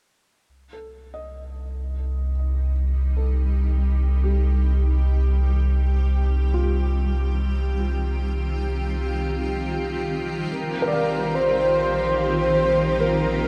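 Floating in free time, this ambient piece is cut from a longer work and settles into a spacious, melancholic mood in C dorian, tuned slightly high at A4 = 442 Hz. A deep, round sub bass sits up front from the opening, sustaining beneath a Cm6 chord as it gradually fades out. A felt-muted upright piano fades in with soft, intimate arpeggios that stay in the background, its mellow tone carrying audible action noise and a trail of delay. A granular cloud pad drifts in at 2.4 seconds, holding blurred, evolving chords with a bright, detuned shimmer inside its own reverb. At 10.5 seconds the harmony shifts to Bbadd9 as a breathy, flute-like synth lead steps up front with a melody, coloured by vibrato, ensemble chorus and delay, all within a huge ambient reverb and a dark production.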